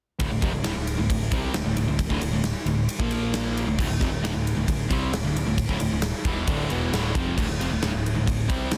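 Aggressive and heavy, this short hard rock cut from a longer piece drives along at 134 BPM in a straight 4/4, set in D minor with tuning at A4 = 438 Hz. A huge arena drum kit sits up front, its punchy kick, medium-tuned snare and bright crash and ride cymbals carrying a pumping room sound. Three picked guitars play the riff together from 0.2 to 8.8 seconds: a cranked stack guitar with overdrive sits in the background, a sludgy, dark overdriven guitar lies very quiet beneath, and a double-tracked, compressed distorted guitar adds a very quiet bright edge. A modern bright picked electric bass, direct and growly, holds down the low end as the harmony moves from Dm to a Bb5 at 3.0 seconds before returning to Dm at 3.7 seconds. Light small-room reverb and a dense, heavily limited modern master keep the whole passage tightly packed.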